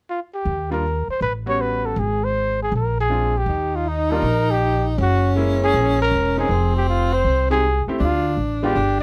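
Swung eighths at 159 BPM in 4/4 carry this relaxed, warm snippet of small-group swing and bop, with a mellow trumpet singing the melody from 0.1 s with light vibrato and scooped notes, over a woody pizzicato upright bass kept up front and a bright grand piano whose action noise is audible as it comps through Ebmaj9, A13 and Bb7. At 3.5 s a breathy tenor saxophone enters with a soft, whispered second line as the harmony moves through Eb, Gb9 and Fm toward Dm. Close, detailed microphones and little reverb make the sound dry and intimate.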